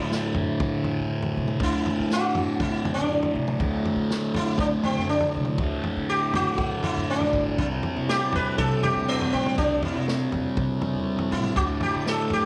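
A straight 4/4 groove from a punchy, natural-sounding vintage drum kit of kick, snare and toms drives this hypnotic, kaleidoscopic psychedelic rock passage, cut from a longer piece, as a buzzing, shimmering sitar solos up front with a slapback echo. Beside it, a thick, double-tracked fuzz guitar grinds out a riff through distortion and phaser, while a woody upright bass and a reedy, breathing pedal harmonium drone sit in the background. The harmony rests on D before moving to C at 7.6 seconds and arriving on D5 at 11.6 seconds, all bathed in a moderate echo chamber reverb.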